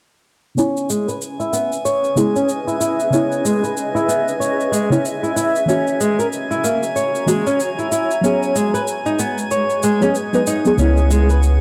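Organic downtempo in C# dorian at 94 BPM with a swung 16th-note feel, earthy and hypnotic, cut from a longer piece and moving through C#m7, F#7 and G#m7. An up-front, thumb-plucked flamenco guitar with fresh strings and finger squeak plays arpeggios through tape echo and a filter sweep, over a deep, nasal chord stab with chorus, tape echo and its own filter sweep, a cloudy granular pad, a glassy texture of drifting overtones, and a tape-warm electronic shaker re-recorded in a small room. A round, dark analog bass with transformer saturation arrives at 10.8 seconds, all within a dry, gritty hardware sound and light digital ambience.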